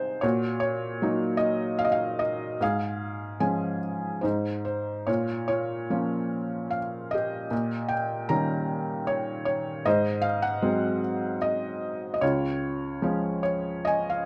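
Classical solo piano in a peaceful, calm mood, this brief excerpt moves at 75 BPM in an uneven 3/4 with rubato in Db major, tuned to A4 = 439 Hz, as a felt-muted upright piano, soft and intimate with audible action noise and sitting up front in close, detailed microphones with light reverb, passes from Ebm/Bb through Eb7/Bb and Ab7 to rest on Db before closing with a gentle fill at 13.4 seconds.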